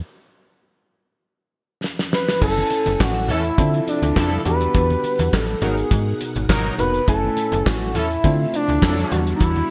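A damped drum kit with a fat snare and gated reverb opens this late-night, slick early-eighties boogie funk excerpt with a fill at 1.8 s, a smooth, gliding sawtooth lead with chorus and vibrato enters up front at 2.1 s, and from 2.4 s a snappy, metallic slap-like FM bass, a worn, slightly out-of-tune tine electric piano with light overdrive, a shimmering phased string machine in the background and very quiet, damped congas join over lush minor-ninth chords, before a bold, detuned analog synth brass line with filter sweeps, chorus and delay arrives at 3.3 s.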